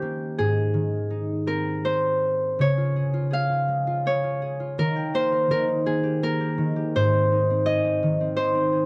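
A children's lullaby in Ab major with an innocent, tender mood, this short 3/4 passage drifts in a rubato feel around 83 BPM as a bright, fingerpicked Celtic harp carries the melody up front while a warm, ringing concert harp plays close-up accompaniment across a broader range through chords moving from Ab to Db at 2.6 seconds, Eb, and back to Ab, all captured in a dry, intimate 1970s-style studio sound.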